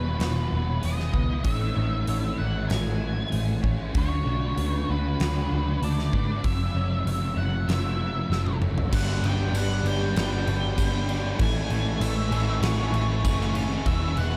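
Wistful and hazy, this shoegaze and dream pop rock excerpt at 96 BPM in 4/4 sets a dark octave-fuzz lead guitar melody with distortion and analog delay over bright, twangy twelve-string electric guitar arpeggios, a crunchy overdriven guitar riff with reverse reverb, a thick fuzz guitar riff with ensemble chorus, and a round, foam-muted vintage electric bass up front, driven by a huge arena drum kit with bright cymbals, a fat snare and a punchy kick. A drum fill at 8.3 seconds leads into a new section where a very quiet, double-tracked distorted electric guitar riff enters at 8.9 seconds, a warbling, lo-fi tape-like pad joins at 9.4 seconds, and a jingly tambourine sits in the background, as the chords move from Emaj9 through Amaj7, D6 and F#m7 to G and back to Amaj7 in a warm production with little reverb.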